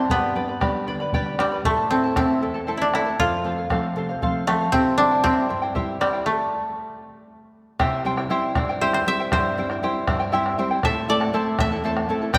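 A dry, woody koto played with fingerpicks carries the melody up front over a shimmering, double-strung charango and a full-bodied, fingerpicked nylon-string guitar, with a round, vintage bombo joining at 0.1 s, in this wistful yet festive Andean folk excerpt in a straight 6/8, bathed in a wet concert hall reverb and marked by a stop at 6.3 s and a nylon-string guitar fill at 10.1 s.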